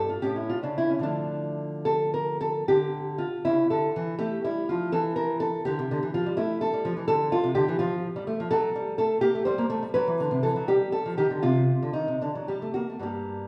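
In a rubato 6/8 that hovers between 71 and 86 BPM in dotted quarters, this grave, solemn excerpt from a longer baroque-style classical dance features a solo nylon-string guitar: dark, small, fingerpicked and up front with audible finger squeak, moving from D minor into G minor at 8.5 s and settling on a D chord near 12.2 s, all bathed in a lingering church-like recital hall reverb with a 1.7-second decay.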